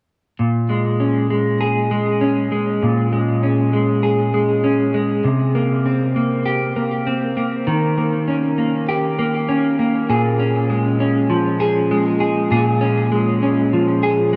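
Set in a straight 4/4 at 99 BPM, this hazy, ethereal dream pop passage in Bb dorian is cut from a longer piece. A semi-hollow electric guitar carries it from 0.4 to 14.4 seconds, playing fingered arpeggios that span Bb2 to Ab4. Its clean, hollow-body tone sits up front, colored by analog chorus and tape echo. The harmony moves from Bbm7 to C5 and then Eb7, and a new section at 10.1 seconds returns to Bbm7. A huge ambient reverb with a seven-second decay drenches the sound and gives it a floating, dreamlike glow.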